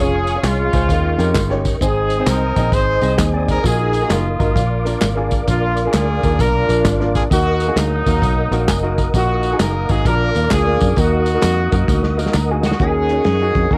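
This light-reverb home cassette recording, tape-coloured, carries a soulful, solemn uptempo gospel excerpt in Eb harmonic minor at 131 BPM, swung in 4/4. Up front, a punchy horn section states the melody over a round, foam-muted fingered electric bass. A dark, small-room soul drum kit enters at 0.3 s alongside close tambourine and handclaps, while in the background a concert grand piano with audible action noise accompanies and adds fills, and a flute-like tonewheel organ holds sustained chords through a slow rotary speaker and chorus vibrato. As a drum fill closes the section, a clean, compressed electric guitar joins the horns on melody at 12.7 s.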